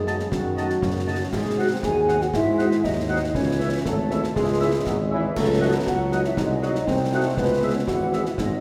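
A vibrato-rich euphonium and a mellow tuba stand out in this stern, resolute military-style march for wind band in 2/4, cut from a longer piece. The euphonium sits back in a roomy space, while an airy, hollow flute ensemble and a smooth woodwind section also carry second lines. Clear trombone chords, soft French horns and a very quiet, distant trumpet melody move through diminished, dominant-seventh and minor harmonies, as concert snare, bass drum and dark clash cymbals sound close and dry against the long reverb of a concert hall.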